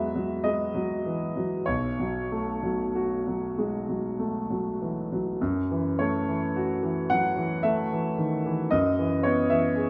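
A clear concert grand piano opens this short cut from a longer impressionist classical piece, playing alone in a slow, rubato 3/4 with a nocturnal, hazy mood. Its up-front sound reaches from deep bass to the upper middle of the keyboard, moving through open, unresolved harmonies such as Eadd9 and Bsus2 before turning to F#m7 at 5.4 seconds, where the opening phrase begins again. A wet recital hall reverb surrounds the instrument, lending the quiet, drifting harmonies a soft, suspended glow.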